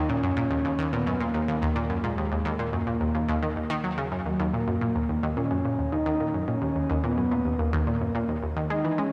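Three parts sound together from the opening moment of this 9.1-second excerpt of mysterious, expansive ambient space music at 108 BPM in 4/4: a breathy, flute-like synth lead carrying the melody with a soft attack and vibrato, a bright, detuned sawtooth pluck playing an up-front riff, and a deep, very quiet triangle-and-sine bass. Chorus, shimmer reverb and tape echo shade both lead and pluck, while the lead also carries a cassette-tape coloring. A lush concert hall reverb surrounds the sound as everything rests on a single D#m7 chord.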